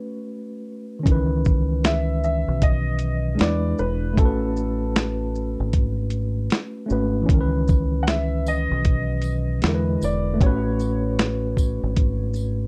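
A swung sixteenth-note groove in 4/4 takes hold at 1.1 s, when a gritty, compressed sampler-style kit of thumpy kick, medium-tuned snare, hi-hat, shaker and finger snaps arrives with a round, punchy dub bass, after a brief break carried by the two keyboards. In this nostalgic, melancholic lo-fi hip hop piece, a woody, slightly detuned upright piano melody sits over a worn, lightly overdriven tine electric piano dulled by cassette tape and a low-pass filter, moving through C#m9, E7 and A69 chords. A jingly, dry tambourine joins in the background at 7.7 s, and the mix has light reverb and a dark production.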